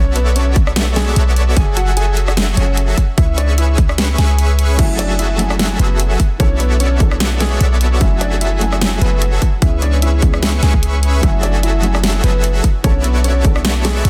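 Dry, dense and heavily limited, this lush, bittersweet future bass fragment sets a dark baby grand piano melody with digital delay over huge, detuned supersaw chords and a deep, boomy 808-style bass, all three pumping against an overdriven, hard-clipped electronic kick and a layered dubstep kit with a huge snare, while a soft, felt-muted upright piano with audible action noise and tape echo joins in the background at 4.8 seconds.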